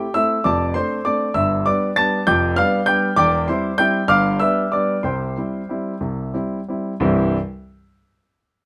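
A baby grand piano opens at once on its own, its tone warm and natural and placed up front, in a short cut from a longer classical-period sonatina. The mood is elegant and cheerful, with a lilting six-eight metre and a gently flexible rubato at an unhurried pace. The harmony moves from Dm7/F through G and G7/F to C/E, then settles on G7 before resolving to C around 5.0 seconds. The playing spans the keyboard from a deep E1 up to a bright A6, framed by a light reverb. The opening section runs to 7.0 seconds, where a second section begins, and the piano sounds until 7.4 seconds.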